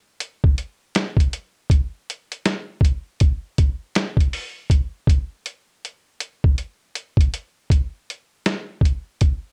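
Hazy and melancholic, this short cut from a longer hip hop piece rides a swung 4/4 groove played by a lo-fi sampler-style drum kit of hi-hat, kick and snare from 0.2 to 9.4 seconds. The compressed, muffled kit sits up front, with a thumpy kick and a medium-tuned snare. The sound is dry and carries the soft grain of cassette tape, moving from one section into a second at 4.7 seconds.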